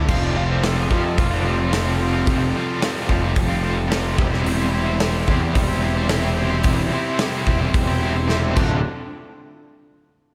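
Driving and swaggering, this classic rock excerpt pairs a growly, fuzzed-out bass and a punchy, up-front drum kit with bright cymbals beneath a crunchy tremolo guitar riff in the background and a tight, bright distorted riff guitar with slapback echo, while an overdriven slide guitar adds a second line until 2.5 seconds and returns at 8.6 seconds, a very quiet, woody acoustic guitar with old strings picks an accompaniment over Fadd9 and C/E changes, a drum fill at 8.3 seconds leads into Dm7, and lush hall reverb gives it a big arena sound.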